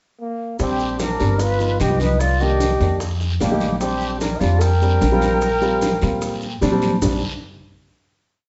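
A straight 4/4 groove at 150 BPM drives this short, sunny and lively Afro-Cuban jazz piece in Bb major, built on an up-front, woody upright bass playing a thumpy pizzicato tumbao that anticipates the chords, with congas mixing slaps and open strokes in the background, very quiet high-tuned bongos in steady eighths with hand bell, a raspy close guiro and grainy maracas. A distant, roomy trombone opens the melody alone at 0.2 seconds with a pickup, carrying motif-based call phrases with vibrato in a jazz style. From 0.6 seconds the band joins, and a breathy silver concert flute adds a crisp-attacked, slightly unsteady harmony line mostly in thirds above it. A dark grand piano supplies syncopated chord stabs in rootless voicings through a progression moving from Bb6 through Gaug7, Cm9 and F9 back to Bb6. The horns stop at 6.6 seconds, and the rhythm section sustains a final chord that rings into a wet studio reverb, with the whole band heard playing live together in one room.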